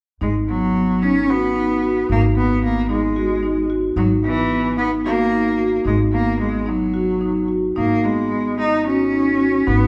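The recording sits in a reverberant recital hall with a 1.6-second decay, heard from further back in the room. This is a pensive, hypnotic passage of contemporary chamber music, cut from a longer piece, in an uneven 7/8 at 223 eighth-note beats per minute with a straight feel, centred on a G#m7 chord in G# minor. A single bowed cello carries the melody between E3 and D#4; its tone is bright and biting, with light vibrato and an intense edge, placed up front. Alongside it, a marimba struck with medium mallets on rosewood bars plays arpeggios from B3 to F#4 with a woody, warm colour. A pizzicato upright bass with steel strings holds a low G#1, sounding acoustic and warm at a softer level than the other two parts. All three instruments play together from 0.2 seconds to the close at about 9.9 seconds.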